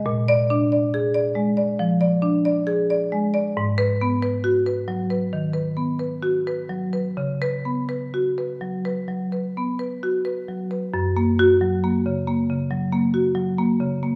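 Bathed in a wet recital-hall reverb, this flowing, playful excerpt of a contemporary classical piece for solo marimba is heard up front, its padauk bars struck with medium hard mallets for a woody, bright and airy tone, as the rubato phrasing drifts through A#7, G#m7 and C#7sus4 harmonies before settling onto F# when the second section begins at 10.9 seconds.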